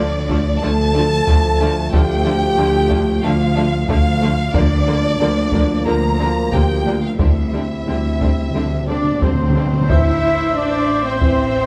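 Epic and heroic, this short cut from a longer cinematic orchestral score moves at 91 BPM in a straight 4/4, built on a Dm to Bb/D to Cadd9/D progression that turns to Am near the end. A lush, expressive violin section carries the melody with soft attack and vibrato, while a second violin line, a distant viola section and a rich, focused cello section fill in the background, and the double basses hold a smooth, even low end. A close-miked French horn section sustains chords over a mellow trombone section set farther back, and a taiko ensemble struck with hard sticks drives the piece from 0.3 seconds. Timpani with medium mallets come in at 4.5 seconds, and from 7.2 seconds they play a fill that runs into the closing section at 9.9 seconds. At 8.9 seconds a dark, roomy trumpet section adds tight stabs, and a pure, hollow silver flute adds a very quiet second line. A moderate scoring-stage reverb and detailed close microphones give the ensemble depth and clarity.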